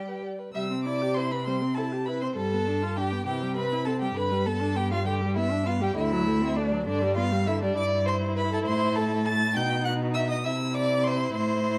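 A string quartet begins together in a quick, cheerful and graceful classical-period movement in 6/8 and C major, tuned to A4 = 436 Hz at 67 dotted-quarter beats per minute, where a warm first violin sings the even melody with vibrato and a smooth top, a distant second violin adds a second line with vibrato and portamento, an expressive viola supplies the accompaniment with its own portamento, and a rich, up-front cello carries the bass with light vibrato, each part bowed by one player in a moderate stone-room reverb across this 11.8-second excerpt of a longer piece.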